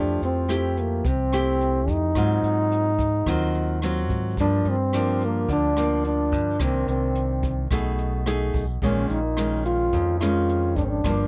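Bossa nova at 108 BPM in a straight 4/4, romantic and sunny, cut from a longer piece and moving through chords such as Fmaj9, Ab6 and Cm9. A mellow, punchy trombone carries the melody up front with light vibrato and a smooth top, over fingerpicked classical nylon-string guitar, a round, amped fingered electric bass and a brushed jazz kit that enters at 0.2 seconds with hi-hat, rim click and a boomy kick. The sound is close and detailed with little reverb, the kit sitting in a small, natural room.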